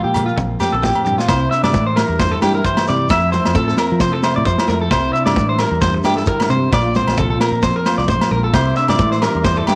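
A dark, clean electric guitar and a bright, twangy lead guitar at the edge of break-up open this danceable highlife excerpt, with the lead's picked arpeggios sitting up front with slapback echo while the accompaniment guitar is thickened by ensemble chorus. A round, fingered electric bass joins from the start, and agogo bells, a grainy shekere, soft-handed high-tuned congas and a gritty vintage drum kit fill in the groove at a lively 132 BPM in 4/4, swung lightly on the sixteenths. The drums, with a tight kick and a saturated, rolled-off top, play a fill from 0.4 seconds before settling in, while the ringing bells and shekere stay in the background and the congas sit very quietly beneath. The harmony moves in C mixolydian through Bbsus2, Cadd9 and Fmaj7. At 8.5 seconds a soft, flute-like tonewheel organ slips in behind with sustained chords through a fast rotary speaker. Light reverb and studio ambience give the band a warm glow.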